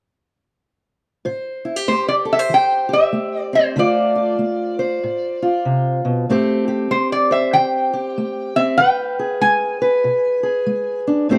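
Brooding and soulful, this short swung acoustic country blues excerpt pairs a boxy, fingerpicked parlour steel-string guitar, entering at 1.2 seconds to carry the accompaniment through Am7, Dm7 and E, with a nasal, metallic lap resonator guitar played with slide and fingerpicks that takes the melody from 1.9 seconds, both sitting up front in a dry, close 1970s-style studio sound with light reverb.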